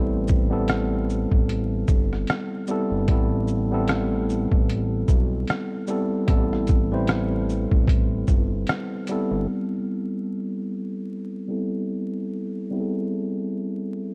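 Dark, dry and dusted with vinyl crackle, this nostalgic, melancholic lo-fi hip hop excerpt in A minor sways at 75 BPM with a gentle 16th-note swing. A gritty, pitched-down sampler drum kit sits up front, with a thumpy kick, hi-hat, rim click and shaker. Beneath it, a fat, saturated, detuned analog bass moves through a filter sweep, while a clean tine electric piano, softened by cassette tape and a low-pass filter, holds an Am9 chord. The bass and drums drop out by 9.5 seconds, leaving the piano alone until 14.1 seconds.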